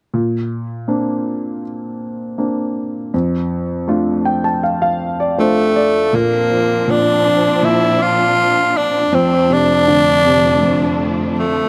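A straight 4/4 pulse at 80 BPM carries this heartbroken, longing pop excerpt, where a clear, worn concert grand piano with deep bass accompanies over Bbadd9 and F6 chords and plays a fill from 3.9 seconds, a raspy, growling tenor saxophone with slapback echo takes up the jazz-style solo melody from 5.4 seconds, and a studio string section adds bowed, expressive sustained chords with vibrato, portamento and a smooth top from 6.1 seconds, the dry sound captured outdoors.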